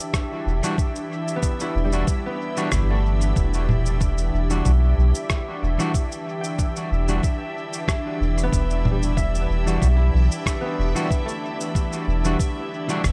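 A spacious digital ambience surrounds this meditative ambient dub cut from a longer piece, resting on a single Em7 chord in E minor at 93 BPM with a light swing on the sixteenths. A round, mellow sub bass sits up front with a muffled, thumpy, pitched-down kick, while rim click, cabasa and congas add compressed, sampler-style percussion treated with dub echo. A bright, detuned organ-like pad holds sustained chorused chords, a concert harp rings out fingerpicked arpeggios through dub echo, a resonant bubbling filter texture hovers in the background, and from 0.6 seconds a dark, slightly broken-up electric guitar adds gritty, echoing stabs.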